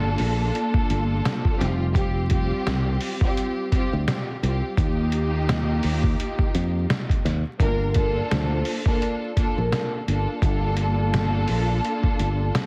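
The recording has a heavily compressed, radio-like sound with vinyl crackle and a dry, close feel, giving this gritty, reflective boom-bap hip-hop fragment a worn character. A lush bowed string section plays smooth, even chords with vibrato, its tone narrowed by filtering and softened by a cassette-tape coloring, moving from Gm7 through Fsus2 and Ebadd9 before returning to Gm7. A growly, direct fingered electric bass sits up front beneath it, while a muffled, pitched-down sampler-style drum kit with a thumpy kick, a medium-tuned snare and hi-hat swings on the sixteenths with a small-room heft. From 7.6 to 9.9 seconds a mellow vibraphone played with soft mallets adds a brief, airy melody, its metallic ring carried by a slow motor vibrato, filtering and delay.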